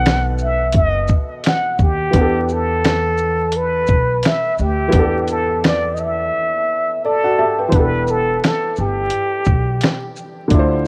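Nostalgic and hazy, this lo-fi hip hop piece in E minor moves at 86 BPM in 4/4 with a swung sixteenth-note feel, cut from a longer piece. A plunger-muted trumpet carries the melody up front, breathy and whispered with wah-wah inflections, vibrato and scooped notes, soaked in tape echo and a low-pass filter until it drops out at 10.1 seconds. Beneath it, a felt-muted upright piano supplies mellow, short-sustained accompaniment through cassette coloring, moving from B7 to Em11 at 2.1 seconds, while a woody pizzicato upright bass holds the low end. A dusty, sampler-style drum kit with a thumpy kick, fat snare, hi-hat, shaker and finger snaps sits up front with 12-bit grit, falling silent between 6.3 and 7.7 seconds before returning for the closing section. Light reverb, small-room ambience, vinyl crackle and the warbling pitch drift of worn tape give the whole recording its faded, intimate character.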